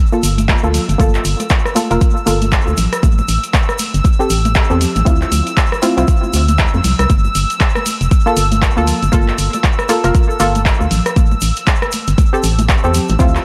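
A swung 16th-note groove at 118 BPM drives this moody, late-night deep house cut in G dorian, where a deep, up-front electronic kick and a punchy analog drum machine of handclaps, hi-hat and rim click anchor a hollow, organ-like FM bass that pumps against the kick, while muted sawtooth dub chord stabs with chorus and analog delay pluck through Gm9, Am7 and Dm9, a reedy studio violin section with light vibrato and a gut-string tone holds a high E6 texture, and soft-handed vintage congas and a grainy egg shaker, both carrying tape echo, sit in the background of an echo-heavy mix with digital ambience.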